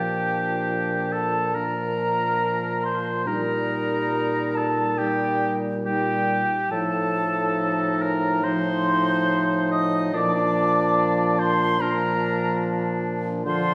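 Heard from further back in a wet recital hall, this lyrical, serene slow romantic movement for wind quintet in Bb major moves at 70 BPM with a rubato feel, the airy, straight-toned flute singing the melody above the oboe's second line, sung with light vibrato and placed up front, while a bright clarinet and a distant French horn fill in the accompaniment and a mellow bassoon carries the bass through the 13.7-second excerpt from a longer piece.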